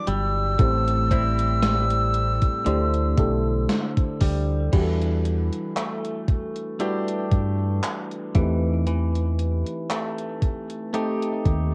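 A slow 58 BPM groove in 4/4 with a light sixteenth-note swing drives this late-night, moody contemporary R&B excerpt in E minor. It is built on an up-front 80s drum machine whose thumpy kick, gated-reverb snare, handclaps, rim clicks, hi-hat and crash are overdriven and tape-worn, and a deep, round fingered dub bass sits beneath it. A soft, warbling FM electric piano with chorus and a bright, twangy clean guitar playing arpeggios carry the harmony from Em9 through Am7 and D9sus4 to Em11, while a breathy jazz flute with a chiffy attack and tape echo sings a high melody until 4.2 s, and a very quiet, woody synth pluck with phaser flickers between 1.1 and 3.1 s, all in a lightly reverberant home cassette sound.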